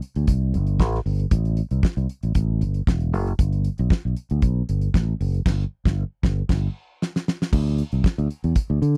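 A straight 4/4 disco groove at 116 BPM drives this sultry clip from a longer piece. A damped 1970s drum kit with a fat snare, tight kick, hi-hat and crash sits up front beside a punchy fingered electric bass, all in a dry, close studio sound. A band accent arrives at 5.5 seconds, a drum fill follows at 6.5 seconds, and a new section begins at 7.5 seconds.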